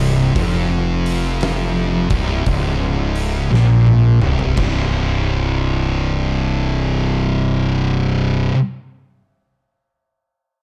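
A thick fuzz guitar sits up front with a distorted, picked riff, joined by a second fuzz guitar set darker in the background, both holding to a low register through this brooding, heavy stoner and doom metal excerpt cut from a longer piece. Beneath them a fingered electric bass adds overdriven fuzz with a round, direct-and-amped tone, also placed up front. An oversized low-tuned acoustic drum kit, gritty and saturated in a bright stone room, drives the slow 57 BPM swung 4/4 with a punchy kick, fat snare, hi-hat, toms and crash, rolling into a fill from 3.5 to 4.6 seconds before it stops at 4.9 seconds, after which guitars and bass carry on alone. The harmony opens on a rootless F#maj7#11 over B# and shifts to a bare C5 power chord at 4.6 seconds. Light reverb and studio ambience frame a dark production.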